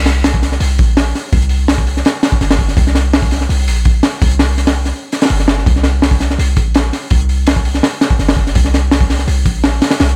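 A crunchy breakbeat drum kit drives this dark, raw jungle and drum and bass excerpt at 166 BPM in a straight 4/4, its high-tuned snare, tight kick and hi-hat sounding saturated and gritty, with a rolled-off top and an up-front place in the mix. Beneath it, a warm 808-style bass holds the low end between G1 and C2: a deep, boomy sine tone with a noise layer, a fast attack and a decaying tail, starting at 0.0 s just ahead of the drums at 0.1 s. The sound is dry, with little reverb, and the tuning sits at A4 = 439 Hz.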